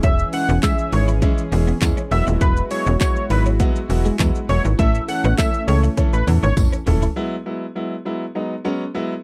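A snappy, metallic FM bass with a slap-like, fast attack sits up front in this carefree, upbeat dance-pop excerpt, shaped by sidechain pumping. A punchy, layered house kit of kick, handclaps, hi-hat, shaker and toms drives a straight groove, with a drum fill from 6.0 seconds, while a very quiet, jingly tambourine adds close, dry shimmer. A bold, retro octave-doubled sawtooth lead carries the melody with chorus, vibrato, a filter sweep and slapback echo. A clear, natural grand piano supplies pumping accompaniment and carries on by itself after the others stop at 7.2 seconds, lasting until 9.1 seconds. In the background, a twangy, picked twelve-string electric guitar plays a riff through ensemble chorus, and a smooth, detuned analog pad holds sustained chords over a progression that moves from C#m to Eadd9 and A before returning to Eadd9, in a dry, close 1970s-style studio sound.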